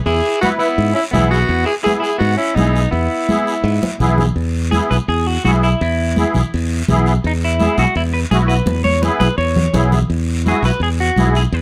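Danceable and festive, this cumbia excerpt in E major moves at 167 BPM, with a raspy, punchy alto saxophone carrying the melody until 4.0 s, after which the clean, picked electric guitar that has been playing a second line takes a solo from 4.4 s, atop a growly, up-front fingered electric bass, a shimmering, reedy musette accordion, thin-skinned congas set back in a small room, and a compressed, saturated guiro, in a dark production with light reverb.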